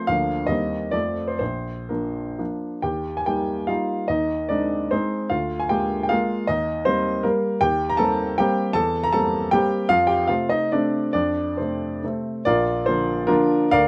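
A clear, intimate grand piano, up front with its natural tone and audible action noise, plays solo through this proud, graceful romantic classical dance in triple time, its dotted rhythms and rubato feel framed by light reverb as the short excerpt moves from an opening idea into a contrasting middle passage and returns briefly at 12.5 seconds.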